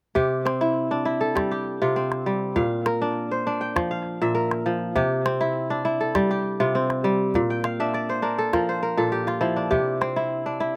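West African traditional string music at 101 BPM in a straight 4/4, set in C mixolydian with tuning a touch below standard at A4 = 438 Hz, carrying a warm, flowing mood. The kora leads with ringing, crisp fingerpicked arpeggios spanning Bb2 to G5, sitting up front in the mix with a slapback echo. A small calabash keeps percussion underneath, close and dry and set well back from the kora, from 0.2 to 10.2 seconds. The harmony rocks between C and Bb, and at 7.5 seconds the kora breaks into a fill that runs to 9.7 seconds, landing back on C. Recorded outdoors with little reverb, the sound is immediate, and the passage is cut from a longer piece.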